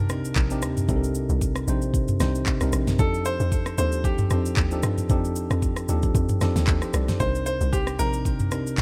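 Amapiano at 114 BPM in 4/4, with a 16th-note swing of 55% giving a loose, hypnotic, soulful sway in C dorian across this short excerpt cut from a longer piece. A bright concert grand piano carries the melody between G4 and C5, its brilliant, polished tone touched by a digital delay and a short sustain. Alongside it, a worn, slightly out-of-tune tine electric piano plays accompaniment from C3 to A5, sitting clean and up front. The hollow log drum bass bounces between Bb1 and G2 with a fast attack, a decaying mellow body and a noise layer. From 0.1 seconds a smooth, produced R&B drum kit joins with a soft kick, fat snare, rim click, handclaps, shaker and toms placed up front. The harmony moves from Cm9 to F13 at 3.0 seconds and back to Cm9 at 7.2 seconds, all in a dry, close-sounding space.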